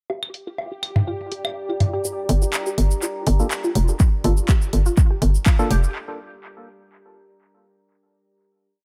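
Minimal techno at 123 BPM in G minor, quirky and sparse, opening with a juicy, squelchy resonant blip pluck running a 5-step loop that drifts against the bar, with phaser, 12-bit grit and dub echo, beside overdriven electronic woodblock, claves and low tom clicking in cross rhythm and a swarming, warbling drone holding a high G in the background. A deep, moody ambient pad of slowly shifting chords enters at 1.1 seconds, and from 2.0 seconds the build-up brings a filter sweep on the arpeggio. At 2.3 seconds a hollow, bouncy FM bass joins, playing off-beat under the house kit's bright hats, shaker and clap, which have been running since 0.3 seconds. Dark, echoing organ stabs in one parallel shape arrive at 3.4 seconds, and a punchy, overdriven four-on-the-floor kick comes in at 4.0 seconds in a dry, echo-heavy mix.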